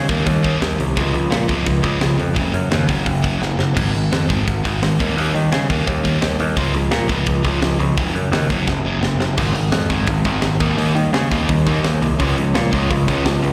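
Energetic and rebellious, this 171 BPM punk rock cut drives a sludgy, overdriven guitar riff with slapback echo over a growly, punchy picked electric bass and a tight metal drum kit with bright cymbals and a high-tuned snare, cycling through Eb, Db, Gb5 and Ab5 with drum fills at 3.4 and 8.7 seconds before a hollow-body semi-hollow guitar joins in the background at 9.4 seconds, all heard as a live gig through the venue's PA with little reverb.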